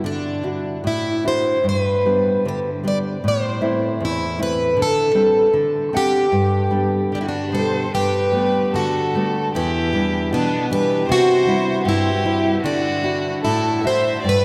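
Fado-style ballad in G major, tender and nostalgic, moving in a rubato 2/4 at roughly 73-80 BPM, with a fingerpicked classical nylon-string guitar carrying the accompaniment and its finger squeaks audible up close. A bright, shimmering, octave-doubled twelve-string acoustic guitar, picked and plugged in, sings the melody over it, and at 7.1 seconds a single bowed violin adds a rich, smooth second line with vibrato. The music sits in a vast, echoing cathedral reverb, and it is cut from a longer piece.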